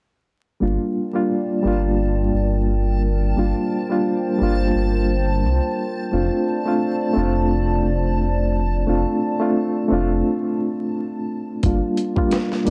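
Over a bed of vinyl crackle, this smoky, dark trip hop excerpt in G minor at 87 BPM opens at 0.6 seconds with a reedy, tremolo-shimmering electric piano touched with vintage sampler grit, low-pass filtering and tape echo, over a deep, rumbling detuned saw bass, soon joined by a warbling, lo-fi chorused pad and a faint, dreamy reversed texture bathed in reverb, before a brief break gives way at 11.6 seconds to a gritty, overdriven soul-style drum kit with a thumpy kick.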